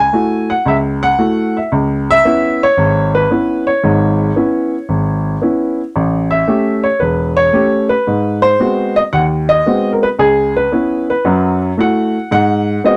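A woody, up-front upright piano plays alone through this 13-second fragment of a longer solo jazz piece, swinging and cool as it ranges from E1 up to G#5 over F#m7, C#m7, A7 and G#7#9 chords, captured in a dry, close 1970s-style studio sound with light reverb on the piano.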